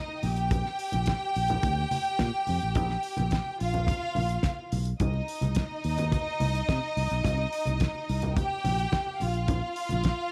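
This short disco excerpt has a small-room ambience around a clear studio sound. A lush, bowed string section carries the second line from the start, clear and focused with vibrato, and sits close and up front between Eb4 and G5. Beneath it, a punchy fingered electric bass, direct and amped, is also up front, while a damped 70s drum kit plays a straight 4/4 with a fat snare, tight kick and hi-hat in a dry, acoustic tone. Low-tuned congas with a thick skin and soft hands sit in the background, adding a warm glow. The harmony moves from Bb5 to Cm at 5.0 seconds and back to Bb5 at 9.2 seconds, giving the glamorous, sultry groove its pull.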